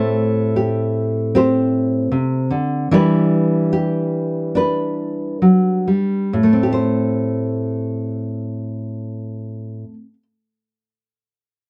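Melancholic and wistful, this brief folk excerpt features a solo fingerpicked nylon-string guitar in A minor, moving freely in 4/4 at around 64-78 BPM and slowing through the first 6.3 seconds. The guitar sits up front with a deep classical tone, ranging from A2 to C5 over Am7 and Em7 chords before returning to Am7 at 6.3 seconds. The recording has a dry, close 1970s studio character with a modest small-room ambience.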